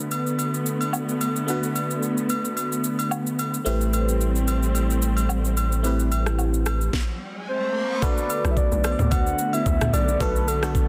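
Dense and heavily limited with a digital ambience, this late-night amapiano fragment feels deep, its 16ths carrying a light swing. A biting FM electric piano treated with phaser and a dark, lush string section bowed sul tasto with vibrato share the harmony from the start, moving from Bm7 to Am7 and back. The electronic afro-pop kit sits up front with a knocking kick, a sharp, softly clipped snare, rim clicks, shaker and toms. Close, dry agogo bells and woodblock add egg shaker and group handclap colour. A round sine sub bass holds the low end mid-phrase, then the groove halts at 6.9 seconds as an electronic riser fills the gap. A soft octave-layered triangle lead with chorus, phaser and delay then carries the melody, and a hollow, bouncy log drum bass enters at 8.4 seconds.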